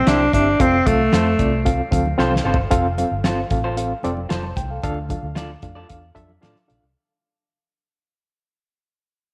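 A breathy, up-front alto saxophone carries the melody in this short, joyful cut from an uptempo 1960s-style soul piece in F major at 113 BPM, singing with light vibrato and a smooth top for the opening 1.7 seconds, shadowed by a ringing, bell-like glockenspiel struck with brass mallets in the background. Beneath it, a dark, round, foam-muted fingered electric bass gives a punchy low end, while a reedy electric piano, lightly overdriven and pulsing with fast tremolo, fills the middle through its built-in speakers. An electric guitar through a small old amp adds slightly broken-up, compressed, lo-fi picked stabs. A cloth-damped, thuddy drum kit with a fat snare, tight kick and rolled-off top holds a straight 4/4 alongside very quiet, medium-tuned congas, and a drum fill at 2.2 seconds leads into a fade-out from 2.7 seconds. The harmony moves from C to F and later to D minor, and a moderate echo-chamber reverb gives the whole a warm, vintage glow.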